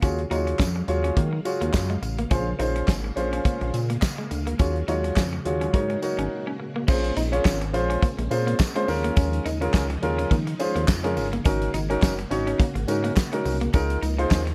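A damped, fat-snared 70s drum kit with handclaps sits up front in this slick, late-night early-eighties boogie funk fragment, joined by a glossy chorused synth bass, a warm grand piano, a lightly broken-up twangy electric guitar riff, lush string-machine chords in the background and a distant jingly tambourine, all in a dark production with a brief break at 6.3 seconds.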